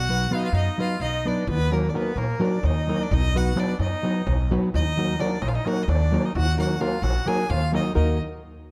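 Driving along in a straight 7/8 at 259 BPM (eighths), this bittersweet, restless Balkan wedding-band folk excerpt in Eb harmonic minor sets a close, clear bowed fiddle melody with light vibrato over a vintage-toned trumpet second line, a woody, thumpy pizzicato upright bass and an up-front fingerpicked flamenco guitar, all alternating between B and Ebm, while a deep clay-shell darbuka played with hard hands joins at 1.5 seconds from the background of a large room, the whole production dark and warm under light reverb.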